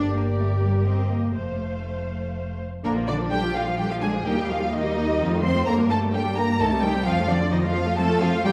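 Lively and cheerful, this quick classical-period movement for string orchestra moves at 128 BPM in a straight 3/4. The first violins sing the melody with a warm, expressive vibrato, while the second violins add a smooth second line in the background. Beneath them the violas give rich, even accompaniment, the cellos sound clear and focused up close, and the double basses sit smooth and up front. The harmony opens on G minor and turns toward B-flat at 2.8 seconds, and recital hall reverb places the whole string orchestra further back in the room in this short cut from a longer piece.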